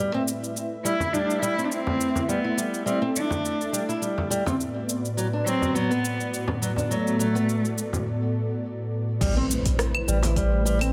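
A lightly swung 104 BPM groove in 4/4 drives this earthy organic downtempo piece in A dorian, where a detuned sawtooth pad with chorus and sidechain pumping and a dark, fingerpicked nylon-string guitar with delay carry the chords, a tape-warm afro-pop kit of claves, metallic hi-hat, shaker, rim click and crash ticks alongside a deep, large frame drum, and a woody bowed cello with vibrato, 12-bit sampler grit and delay sings the up-front melody until 8.0 s, before a break gives way at 9.2 s to a round sine sub bass with tube saturation, a produced electronic kick and a background impact, the whole set in a moderate scoring-stage reverb.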